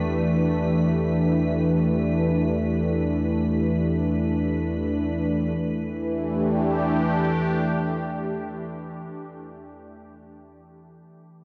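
Floating in free time, this cavernous, ominous dark ambient drone sets a deep, rumbling, wave-folded drone beneath an up-front, warbling, detuned sawtooth pad that holds sustained chords through a filter swell and chorus, while a faint, crystalline glass pad hovers on a single high note until 5.6 s, the sound steeped in a wet cathedral reverb and a dark production in this cut from a longer piece.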